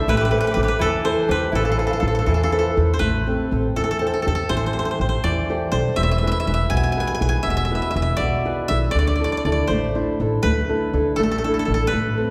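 Italian folk in the serenade style, this lively, sunny excerpt moves in 6/8 at 81 BPM in A minor, with a koto carrying the melody up front, its fingerpicked tone dry and woody, while a bright double-strung mandolin adds a second line in the background only until 2.7 seconds. A fingerpicked flamenco guitar with fresh strings supplies the accompaniment, and a dark pizzicato upright bass on steel strings sits close and present beneath, moving through chords from Amadd9 to Am7, E and Dsus2. The whole ensemble is heard from further back in a wet recital hall with a long reverb tail, and the clip is cut from a longer piece.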